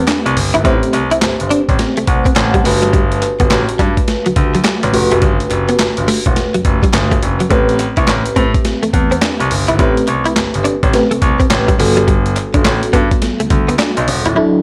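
A swung sixteenth-note groove in 4/4 drives this confident, slick new jack swing and R&B passage, cut from a longer piece, built on a gritty, pitched-down, sampler-style drum kit with a thumpy kick and a medium-tuned snare that sit up front with a large-room character, alongside a very quiet, crisp group handclap. A polished concert grand piano carries the deep, short-sustained bass line while a clean, direct-recorded electric guitar plays a picked, compressed riff with ensemble chorus. A mellow, warbling FM electric piano with tremolo and phaser supplies vintage accompaniment over Am9 and Gmaj9, adding a fill from 1.8 to 2.9 seconds, all under a light reverb.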